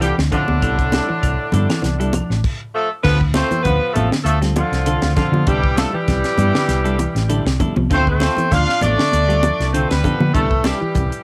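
Driving and funky, this afrobeat excerpt rides a swung sixteenth-note feel in 4/4. A punchy horn section carries the melody up front, its octave doubling and light vibrato softened by cassette tape. Beneath it, a breathy, raspy tenor saxophone adds a gritty second line in the background. Two clean, picked electric guitars sit low in the mix: one plays arpeggios with a warbly pitch drift, the other plays stabs through an analog delay. A dark, round hollow-body bass anchors the groove alongside a tight, dry funk kit with bright cymbals and a high-tuned snare. Woody claves open the piece until 2.3 seconds, ringing high-tuned congas join at 0.3 seconds, and a stop between 2.4 and 3.0 seconds breaks up the vamp over a C69 harmony, all captured in a small room on a home cassette recording.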